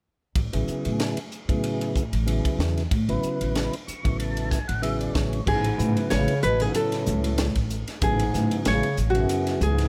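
A swung sixteenth-note groove at 94 BPM in 4/4 drives this short cut from a longer electric jazz fusion piece in A major, funky and soaring in mood. Woody, thumpy pizzicato upright bass and a crisp fusion drum kit start at 0.4 seconds. The kit has a high-tuned snare, punchy kick, hi-hat, ride and crash, and sits in a small, pumping room. A clear tonewheel organ, lightly overdriven through a slow rotary speaker with audible key click, joins over an Amaj9 chord and plays a fill from 3.6 seconds. At 5.5 seconds an up-front, fingerpicked nylon-string guitar takes the melody with a deep classical tone, while a mellow bass clarinet adds a jazz-style second line with vibrato, a soft attack and a smooth top, and bright, high-tuned congas with hard hands sound distant in a large room in the background. The overall sound is dry, with little reverb.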